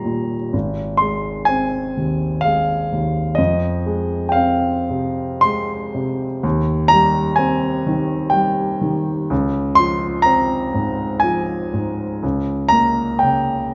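In 3/4 with free rubato at roughly 52-64 BPM, this dreamy, nostalgic romantic nocturne in Ab major unfolds for solo piano, a fragment taken from a longer piece. The dark, mellow grand piano sits up front and spans from Ab1 to C6, drifting through Ab, Fm7, Cm/Eb and Dbmaj7 before arriving at Gdim/Db at 12.2 seconds. A moderate recital hall reverb lends the sound a lingering air.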